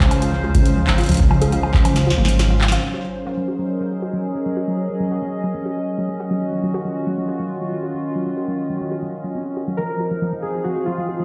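A straight 4/4 pulse at 138 BPM drives this wistful, glitchy IDM excerpt in Gb lydian, where a deep electronic kick and a booming analog drum machine with crisp snare, metallic hats, bongos, handclaps and digital delay join a rumbling detuned saw bass and a bubbling stepped-filter texture for the first 2.8 seconds, the kick dropping out at 2.0 seconds for a drum fill, while a hollow, flute-like pad with sidechain pumping and a dusty, warbling pluck arpeggio with tape echo and filter sweeps carry the chords from Dbmaj7 through Gb6 and Ebm9 to Fm7, and nostalgic lo-fi synth keys enter with a melody at 9.8 seconds, all heard as if played on a big sound system in a bare stone room.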